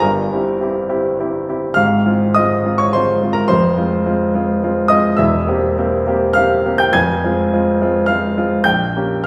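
Classical romantic character piece for solo piano in F minor, moving at 104 BPM in 3/4 with a flexible, rubato feel and a bittersweet, stormy mood. The baby grand piano plays throughout this 9.3-second passage cut from a longer work, ranging from E1 in the deep bass up to Ab6. Its tone is clear, polished and present, sitting up front in the mix. A wet recital hall reverb with a 1.8-second decay surrounds it, giving the sense of hearing from further back in the room. The harmony opens on C7 over G, settles into F minor chords, passes through C7 over E, and closes on a diminished G chord over Bb at 8.7 seconds.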